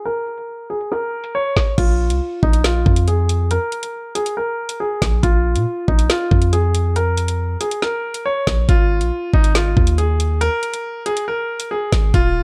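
A clear concert grand piano carries the melody in this menacing, cold drill track cut from a longer piece, its intimate, polished tone sitting up front with audible action noise and deep bass, shaped by a low-pass filter and digital delay. An electronic, produced drum kit moves in a half-time feel, its knocking kick, woody snare, metallic hi-hats and crash cymbal roughened by vintage 12-bit sampler grit. A punchy, heavy 808-style bass enters at 1.8 seconds, its sine tone layered with noise, quick in attack and decaying. From that point a filter sweep works on the piano until 8.7 seconds, as the harmony moves from Bb5 to Ab5. A low-pass-filtered digital ambience frames this hip hop production.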